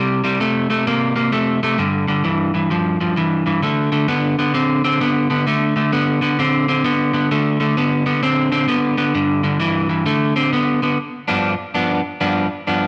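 A lone electric guitar, picked with a slightly broken-up, up-front tone, opens this swaggering, laid-back, swung blues excerpt, moving through C5, G5 and D5 before landing on G7 at 11.0 seconds, with its sound set in a moderate echo-chamber reverb.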